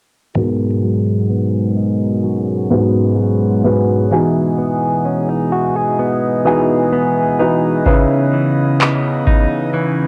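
Heard as a home recording on cassette with light studio reverb, this short cut from a longer contemporary R&B piece sits at a slow 64 BPM in straight 4/4 and G# minor, with a longing, moody air. A grand piano carries the accompaniment up front with a warm, present tone and long sustain, while a clean electric guitar, recorded direct and compressed, picks arpeggios close beside it. Behind them a chamber organ holds sustained chords on light, bright flute stops with a gentle chiff. The piano, guitar and organ each pass through a low-pass filter, and a filter sweep runs across the passage as the harmony moves from G#m7 through Emaj7 to C#m9. At 7.9 s a booming analog drum machine arrives with a deep, tape-warm kick and handclaps, re-recorded in a small room and placed up front, before it stops at 9.5 s.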